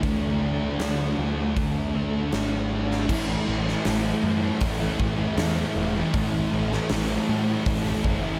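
A thick, double-tracked fuzz guitar sits up front with distortion and analog chorus, playing a riff that moves from a D5 chord to A5 at 3.1 seconds, over a punchy overdriven picked bass and a huge acoustic arena drum kit with bright cymbals and a pumping room sound, all soaked in lush hall reverb in this blissful, hazy 79 BPM shoegaze and dream pop fragment in straight 4/4.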